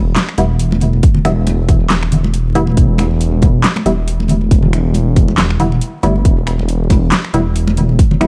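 A dark, detuned sawtooth bass rumbles from the very start of this heavy, half-time deep dubstep excerpt, soon joined by a dubstep kit of finger snaps, handclaps, metallic hats and a huge snare, muted filtered dub chord stabs with lush chorus and dub echo, damped high-tuned congas also treated with dub echo, and a punchy, up-front electronic kick entering at 1.0 seconds, all set in a dry, swung mix over a bed of vinyl crackle.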